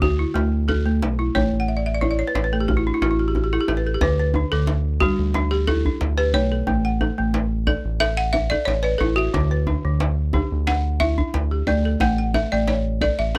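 Hypnotic and warm, this excerpt of West African string and xylophone music in D major moves at a straight 90 BPM in 4/4, with two woody, buzzing balafons struck with hard rubber mallets carrying an up-front melody and arpeggios, one breaking into a fill at 1.6 seconds and a solo from 4.0 seconds, over a round, dark analog bass with a sawtooth edge and filter sweep and a deep, saturated djembe played with soft hands, all captured by close, detailed microphones in a dry room.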